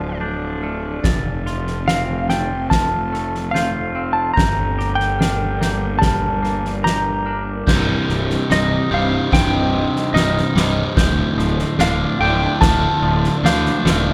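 Melancholic and brooding, this post-rock passage moves at a slow 73 BPM in C dorian, cut from a longer piece and set in the wet reverb of a church or concert hall. A dark, clean lap steel guitar carries the melody with fingerpicked slide lines, while an ethereal, airy pad with ensemble chorus holds sustained chords in the background. A mellow glockenspiel played with soft plastic mallets and a compressed, twangy electric guitar both spin arpeggios behind it, and a fuzz-laden fingered electric bass anchors the low end. At 1.0 seconds a soft-mallet drum kit enters up front, with a fat snare, boomy kick and crash cymbal. The build-up begins at 7.7 seconds, when a bright, overdriven semi-hollow guitar joins with a picked riff, as the chords move from Dm through F and Gm to Cm.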